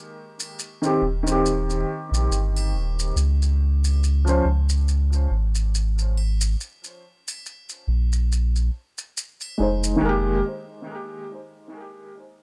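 A deep, round dub sub bass sits up front from 1.0 s, its soft, sustained tone anchoring this melancholic, smoky trip hop excerpt with a gentle swing. Beside it, a felt-muted upright piano plays mellow, intimate accompaniment colored by tremolo, tape echo, 12-bit sampler grit and a low-pass filter that sweeps across its part. Faint compressed, saturated maracas, triangle and group handclaps tick along from 0.4 s to 10.0 s, all captured in a dry, gritty hardware recording with studio ambience.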